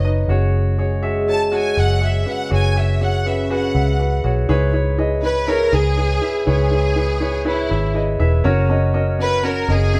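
Driving and dramatic, this piano-driven pop excerpt, cut from a longer piece, sets a lush, vibrato-laden violin section carrying the melody over a warm concert grand with deep bass and a round, punchy, foam-muted fingered electric bass sitting up front. A dark, soft-attacked French horn section adds a distant second line in the background until 4.0 s, while chords move from F#sus2 through C#m7 to F# at 8.4 s. The band sounds as if playing live together in a stone room with moderate reverb.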